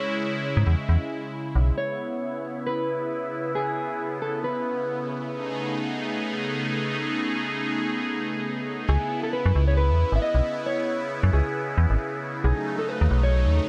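Set in a light reverb, this melancholic, intricate IDM excerpt moves at 135 BPM in C# minor with a gentle 16th-note swing, drifting from E6 through C#m7 and B13 to a closing B9. A bright, swirling analog pad sits up front throughout, its detuned sawtooth chords evolving under phaser and chorus. A dark, clean, fingered electric guitar carries the melody through a digital delay, pausing after 5.1 seconds, and both it and a digital, metallic FM bass with fast, decaying notes return together at 8.9 seconds.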